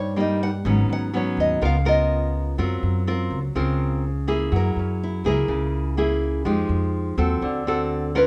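A straight 4/4 bossa nova pulse at 124 BPM carries this intimate, melancholic clip, cut from a longer piece and lasting just over eight seconds. Two fingerpicked nylon-string guitars play throughout. One carries the melody between Db4 and Gb5 with a small, dark tone, and the other supplies a full-bodied, deep classical accompaniment that sits up front. A pizzicato upright bass with steel strings grounds the harmony between Ab1 and G2, its woody, warm sound also placed close to the listener. The chords drift from a rootless Cm7 through Abm7, Db13 and a lingering Gbmaj9#11, then Gb9, before Fm9 and a D7 at 7.4 seconds close the passage. Light reverb gives the small ensemble a soft sense of space, and the melody guitar is heard as a solo across the whole passage.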